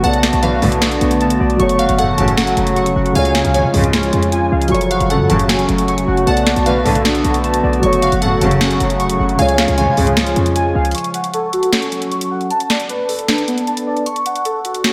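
Warbling, detuned lo-fi synth keys sit up front with nostalgic arpeggios in this dark, hard-hitting trap excerpt in F# harmonic minor at 154 BPM with a half-time feel, backed by a sharp-snared, bright-hatted trap kit and a punchy, tight 808-style bass. A vintage tape-like pad holds sustained chords alongside a mellow, boxy concert grand with audible action noise, while a crystalline wavetable pluck and lush, bowed string stabs linger in the background. Everything but the keys and drums drops away by 10.9 s for a break that runs to 14.9 s, all bathed in a dreamy hall reverb.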